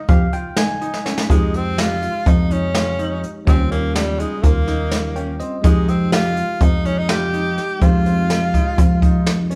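Brooding and tense, this progressive instrumental excerpt in 9/8 sets a bell-like tine electric piano and a clear concert grand piano playing arpeggios in the background over a plucky, funky analog bass and an up-front brushed drum kit with a boomy kick, before a drum fill at 0.9 seconds ushers in an edgy, forceful tenor saxophone melody with jazz vibrato at 1.3 seconds, all sounding like a band playing live in one large studio room with moderate reverb.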